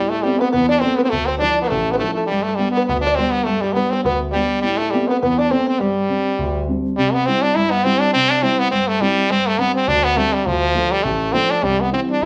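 Lively and cheerful, this Celtic reel in G mixolydian moves at a brisk 206 BPM in 4/4, its eighth notes carrying a light swing, and the clip is cut from a longer piece. A stopped French horn carries the melody up front, its tone nasal and metallic with a soft attack and light vibrato, played in a classical style. Behind it, an open-back banjo adds a fingerpicked, twangy second line in the background until it drops out at 6.6 seconds. A dark concert grand piano supplies mellow accompaniment with deep bass, sitting up front alongside the horn throughout. The harmony moves through Amadd9, Dmadd9 and G before the second section opens on C at 7.0 seconds and turns through Gsus4 and Dm. The whole is heard from further back in a studio room with a wet reverb.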